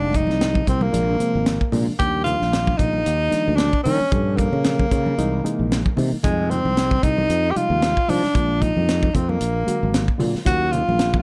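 A breathy, mellow tenor saxophone leads this driving, intense jazz fusion excerpt from the start, its solo line carrying light vibrato and scooped notes over a reedy electric piano with fast tremolo set in the background and a growly, sustaining fretless bass. From 0.1 seconds a tight, up-front funk drum kit with a high-tuned snare and a tight kick joins, along with very quiet, bright, damped congas played with soft hands. The groove swings lightly on the sixteenths beneath jazzy chords such as Fm9, Ebmaj9 and C7alt, all touched by a light reverb.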